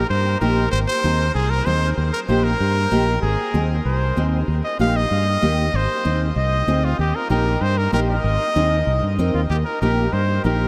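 A straight 4/4 Latin groove at 192 BPM in Eb major moves between Eb and Ab chords in this festive, danceable cut from a longer piece, with a bright, close-miked trumpet carrying the melody through tape echo over a round, punchy fingered electric bass, while a full-bodied, fingerpicked nylon-string guitar treated with analog chorus joins at 0.4 seconds, the whole mix soaked in a huge, dreamy reverb.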